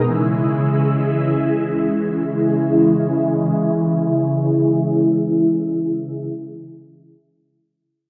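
A vintage ensemble organ-string part opens on a C# minor chord, holding sustained, soft-attack chords between C#3 and E4 in free time. Its bright, up-front tone is colored by phaser, ensemble chorus and a low-pass filter, with a filter sweep over the first 2.1 seconds, and it carries the whole excerpt until 6.3 seconds. This short pop fragment feels confident and driving, heard as a live gig through the venue's PA, with a wet club reverb and recital hall ambience around it.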